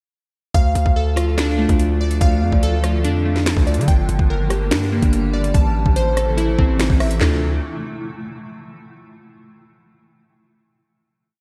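Cold and ominous, this short drill hip hop piece in D minor moves at 144 BPM in a half-time feel, with an up-front electronic kit of knocking kick, sharp snare layered with finger snaps, handclaps, rim clicks, toms and metallic skipping hi-hats with fast rolls driving a hook from 0.5 s, while a hard-hitting 808-style bass plays long, punchy sub-bass notes that follow the kick with pitch slides, glassy digital keys repeat a falling eighth-note arpeggio like a sampled loop through chorus and analog delay, and a cloudy, blurred granular pad enters at 1.2 s with mellow sustained chords, all in a dreamy mix soaked in lush hall reverb before settling on a final D minor chord at 7.2 s.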